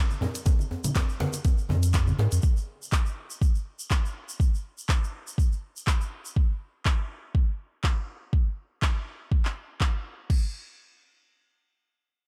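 An up-front, deep electronic kick drives this warm, earthy afro house piece at 122 BPM with a swung sixteenth feel, alongside a layered deep house kit of crash cymbal, handclaps and hi-hat re-recorded in a small room. Saturated, soft-handed congas and a djembe carrying metal rattles open the groove and drop out early, while a grainy, mellow tube shaker lingers until 6.3 s. A round sine sub bass with sidechain pumping surfaces only briefly at 1.7 s, and the kit and kick carry on until 10.4 s of this excerpt from a longer piece.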